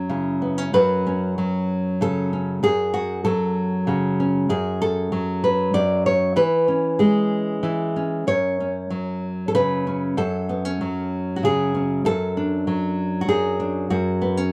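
Moving in a straight 3/4 at 96 BPM, this short folk extract unfolds as a solo fingerstyle performance in F# minor, its mood haunting and melancholic. A single nylon-string guitar carries everything from the first moment to 14.5 seconds, fingerpicked with a bright, classical tone and placed up front in the mix. Its range stretches from F#2 up to D5, opening on an F#5 shape before settling onto F# minor. At 4.5 seconds the chords fall away for a moment, then the guitar moves through E6 and back to F# minor, colouring it with an F#madd9 before closing on F#5. The sound is dry and close in the manner of a 1970s studio, touched only by light reverb.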